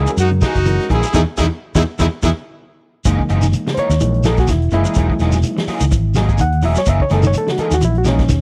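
This joyful, hypnotic afrobeat excerpt at 126 BPM in F# mixolydian opens at 0.0 s with a punchy, present horn section playing the melody, a forceful trumpet with vibrato carrying a second line, twangy, slightly broken-up electric guitar stabs through analog chorus, and a dark, round fingered bass sitting up front. Almost at once a vintage drum kit with a tight kick and medium-tuned snare, a grainy shekere and a gritty, overdriven reed electric piano through a combo amp join in, followed by clean picked guitar arpeggios tucked in the background. The 16th-note swing gives the groove a loose lilt as the harmony moves from F#13 to Emaj7 under a band accent, with the horns and trumpet stopping at 2.3 s. At 3.1 s the chords return to F#13 and the reedy electric piano takes a solo to the end of the cut. The sound is dry and close, a small-room 1970s-style studio recording with a warm, natural character.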